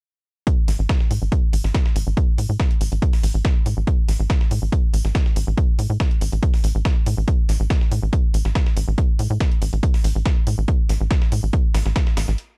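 A straight pulse from a punchy, analog electronic kick sits up front and drives this dark peak-time techno cut from a longer piece, joined by a gritty, compressed sampler-style kit whose filtered, pumping hi-hats and medium-tuned snare come in at 0.5 seconds. A tight, nasal sequencer bass with a fast-attack sawtooth and square-wave filter pluck pumps with sidechain compression, while smooth, layered electronic hi-hats re-recorded in a small room add a tape-warm sheen. The dry, dusky production holds one relentless groove until a break at 12.4 seconds.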